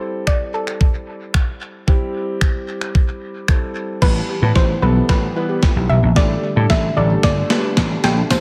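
A thumpy, gated 80s drum machine with a gated-reverb snare and dub echo drives this energetic dance-pop excerpt in A minor at 112 BPM, opening over a soft, nasal pluck melody with chorus and a smooth grand piano that pumps under sidechain, before a build-up with a drum fill and filter sweep at 4.0 s brings in a punchy slap bass, a very quiet sweeping sawtooth pad, a crystalline wavetable pluck playing arpeggios, and finally a jingly tambourine at 8.3 s in an echo-heavy, high-passed mix.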